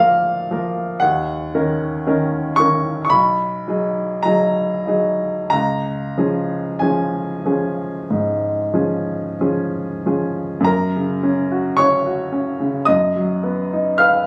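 A clear upright piano, woody and smooth with a vintage character, sits up front in this short, serene classical fragment, a romantic nocturne in F# major played with tender rubato at a slow 45-58 BPM in 4/4. The harmony moves from Bb/D through D#m7, G#m7/B and C# before settling on F# at 10.7 seconds, where a new section begins and closes on D#madd9/F#. Light reverb, compression and the ambience of a club come through the phone recording of the room, and the passage is cut from a longer piece.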